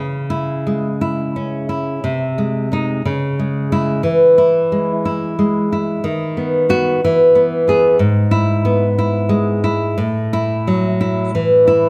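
Close, detailed microphones place the nylon-string guitar up front, while a moderate scoring-stage reverb with a 1.6-second decay gives it a soft halo of space. This romantic solo classical guitar passage, cut from a longer piece, moves in a rubato 6/8 at about 60 beats per minute, counted in dotted quarters, and carries a sunny, warm mood. The fingerpicked acoustic guitar has the warm tone of fresh strings and ranges from G#2 to G#4 across the full 11.9 seconds. The harmony begins in C# minor, then settles into E major from 8.0 s, closing on an F#m7 chord over A at 10.0 s.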